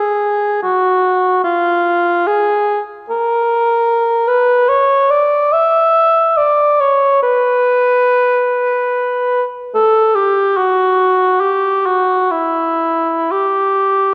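A dark cor anglais plays alone and up front, its soft attack and smooth top shaping a lonely, mournful line between E4 and E5 in B minor. This free, expressive classical piece moves in a rubato 4/4 at roughly 56-78 BPM, and the 14.1-second passage is cut from a longer work. A moderate scoring-stage reverb surrounds the horn, and the whole recording carries the worn, warbling pitch drift of old cassette tape.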